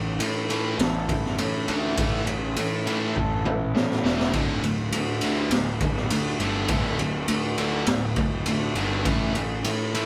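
A straight 4/4 pulse at 102 BPM drives this restless, bittersweet quiet-loud alternative rock excerpt, where a very quiet, twangy, lo-fi guitar through a small old amp picks arpeggios until 4.3 s, as the harmony moves from A to D5, while a biting overdriven guitar and a bright distorted guitar grind out low riffs in the background, a punchy fuzz-picked bass sits up front, and a raw garage drum kit, in from 0.2 s with a boomy kick, high-tuned snare, ride, toms and a gritty, rolled-off top, throws a fill at 3.2 s, all captured as a band playing live in one room with light reverb.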